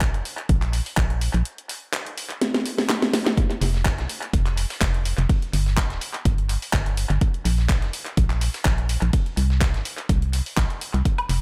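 A hollow, dark, organ-like FM bass sits up front in this feel-good, joyful piano house excerpt, its percussive notes pumping against a punchy electronic kick that has been re-recorded in a large room for a tape-warm weight. A house kit of handclaps, hi-hat, woodblock and a cracking snare rides on lightly swung 16ths with tape echo, and a drum fill arrives from 2.4 to 3.4 s. At 3.4 s a very quiet, gritty sampler-style kit with a fat snare joins beneath it all, inside an echo-heavy digital ambience.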